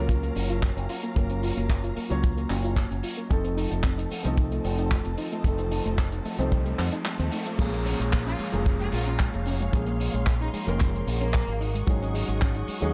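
A straight groove drives this cosmic, groovy nu-disco passage, cut from a longer piece. The punchy, dry kick sits up front beside a damped 70s drum kit of hi-hat, handclaps, cabasa and dark crash cymbals in studio reverb, while a bright fingered electric bass with an envelope filter pushes the low end. A dark, mellow grand piano with long sustain, tape echo and sidechain pumping carries the accompaniment over a background string section whose smooth top, vibrato and portamento give the sustained chords a lush, bowed glow. A soft, round pluck with chorus, 12-bit sampler grit and analog delay spins gentle arpeggios in the background, and a riser and downlifter sweep through from 5.7 seconds. The kick drops out briefly before the drop lands at 7.6 seconds, where the harmony moves from Gbmaj7 and F7 to Bbm7. A close, expressive violin section then carries the melody from 8.3 seconds with analog delay, all within a gritty, small-room hardware sound.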